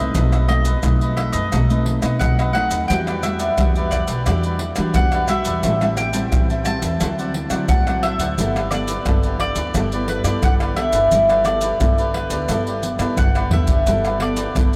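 A straight 4/4 groove at 88 BPM drives this playful, joyful samba and choro excerpt in G major, where a round, mellow, double-strung mandolin carries the melody over crisp, bright cavaquinho, a fingerpicked classical nylon-string guitar with audible finger squeak, and a woody, thumpy gut-string upright bass, while up-front, compressed and saturated percussion of maracas, deep surdo, pandeiro and tamborim, struck with hard hands, adds a drum fill at 13.2 seconds, the ensemble set in a huge, echoing reverb that suggests a vast space.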